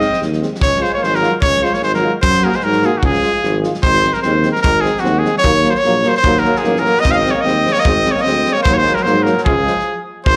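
This sounds like a live gig heard through the venue's PA, with light studio reverb and club ambience around a Balkan brass band, cut from a longer piece. The music is festive and virtuosic, moving at 149 BPM in 2/4 with a slight swing on the sixteenths, centered in Db major. A bright trumpet carries the melody up front with light vibrato and slapback echo. Behind it, a distant, roomy alto saxophone plays a second line, dropping out at 3.6 seconds and returning at 6.2 seconds. A clear French horn and a vintage-toned euphonium fill in the accompaniment in the background, both touched by slapback echo, while a warm tuba with light vibrato holds down the bass. A loose indie drum kit of punchy kick and medium-tuned snare sits mid-forward, saturated and gritty with a rolled-off top, and the band breaks off in a stop at 9.8 seconds.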